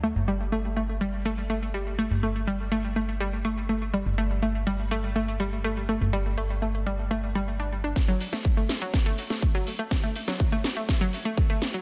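A detuned, ring-modulated analog pluck spins bright arpeggios with chorus, delay and sidechain pumping over a funky, tube-saturated sawtooth bass that pulses on Gsus2 until 7.9 s in this expansive, euphoric 123 BPM progressive house excerpt, then at 8.0 s a punchy layered kick and a tape-toned house kit with cracking snare and metallic hats drive a build-up drum fill over F#m, all set in a lush hall reverb and a dense, heavily limited modern master.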